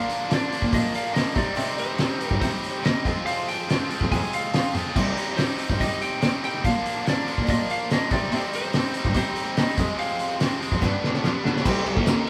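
A straight 4/4 pulse at 143 BPM drives this gritty, swaggering classic rock excerpt in C minor, where a biting, double-tracked overdriven guitar riff and a muffled, cloth-damped drum kit with a fat snare sit up front, a twangy, lightly driven lead guitar carries the melody, a very quiet, shimmering twelve-string acoustic guitar picks out accompaniment with audible finger squeak, a distant, earthy bowed cello supplies the bass, a drum fill arrives at 10.8 s before the chords resolve from G to Cm, and a jingly tambourine taps in at 12.1 s, all played live in one room with light reverb and a faint mains hum.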